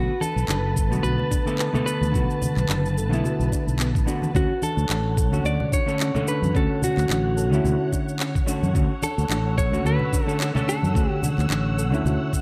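Relaxed sunset chillout at 109 BPM in D major with a light 16th-note swing, drifting from Bm7 to Dmaj7 at 4.3 seconds, where a clean, picked electric guitar carries the melody through digital delay over dark hollow-body jazz guitar accompaniment, a silky, warbling string machine with ensemble chorus and 12-bit sampler grit, a round background pluck arpeggio softened by chorus, cassette tape and delay, a growly, up-front fretless bass, electronic shaker and handclaps, soft-handed congas, and a thumpy, tape-warm kick entering at 0.8 seconds, all in light reverb in this excerpt from a longer piece.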